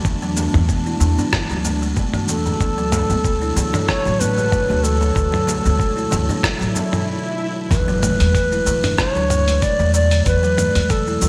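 A gritty, overdriven electronic kick and a dusty sampler-style kit of hi-hat, rim click, shaker and toms with gated reverb set a lightly swung 94 BPM organic downtempo groove alongside a very quiet djembe, a woody pizzicato upright bass and a buzzing, hollow kalimba tracing arpeggios through a delay, while an ethereal pad pumps in the background and a mellow Native American-style wooden flute enters up front at 2.3 seconds, before an electronic swell leading to an impact at 7.7 seconds moves the earthy mood into a new section under a lush hall reverb and bright 1980s-style digital sheen.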